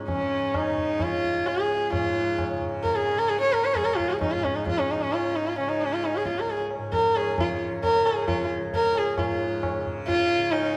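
A bowed sarangi carries the melody up front in this meditative, radiant excerpt of Hindustani classical music, set in raga bhupali on Db at 132 BPM in 4/4 and tuned to A4 = 438 Hz. One player's tone is warm and intimate, with a soft attack, light vibrato, gliding portamento and the halo of sympathetic strings, ranging from Db4 to Db5. Beneath it, a tanpura holds a bright, buzzing, shimmering drone from Db2 to Db3, softly plucked and sitting low in the mix. A low-tuned tabla rings from a distance, as if in a large room, keeping the percussion well behind the bowed line. The tempo quickens throughout, and the music moves into a new section at 9.2 seconds before the clip ends at 10.8 seconds, all framed by a moderate scoring-stage reverb.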